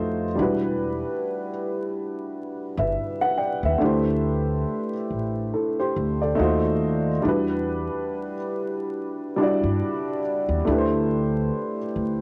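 Hip hop with a hazy, nostalgic mood and a light swing on the sixteenths, cut from a longer piece. A dark, mellow upright piano sits up front, worn and slightly detuned with audible action noise, long sustain and a cassette tape colour, moving through Em7, D7sus4 and a passing D#dim7. Beneath it a plucked upright bass gives a woody, thumpy low end, and the whole home cassette recording carries vinyl crackle and a moderate studio reverb.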